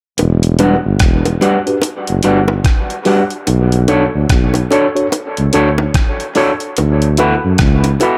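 A smooth, longing lovers rock reggae groove at 73 BPM in E dorian opens at 0.2 s with a scooped, up-front tuba bass, together with a thumpy, tape-warm detuned 8-bit drum machine of kick, hi-hat and rim click in gated reverb, and tight, high-tuned bongos played with soft hands, sitting very quietly behind. At 0.6 s a worn, slightly out-of-tune tine electric piano and a twangy, slightly broken-up electric guitar through a small old amp join, both carrying dub echo, with the guitar adding picked stabs over chords moving from Em9 to Bm9 and D69, while a swung sixteenth-note feel and light reverb give this short cut from a longer piece a relaxed, yearning sway.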